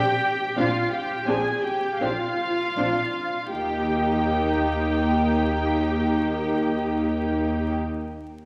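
Rubato phrasing in 4/4 gives this lyrical, serene fragment of a slow romantic movement for string orchestra a free, breathing pulse, and it slows down across its first 3.5 seconds. A violin section carries the melody with vibrato and a woody, distant, lush tone. A second, more intimate chamber violin section traces its own line close by with light vibrato and a smooth top. Up front, the violas supply a pure, floating accompaniment with soft attacks, while a cello section with vibrato and the soft-edged double basses share the bass. Every section is bowed sul tasto and dark in color, and the five play together throughout, with a rootless Bb7 harmony settling onto Eb at 3.5 seconds under a wet scoring-stage reverb and a layer of vinyl crackle.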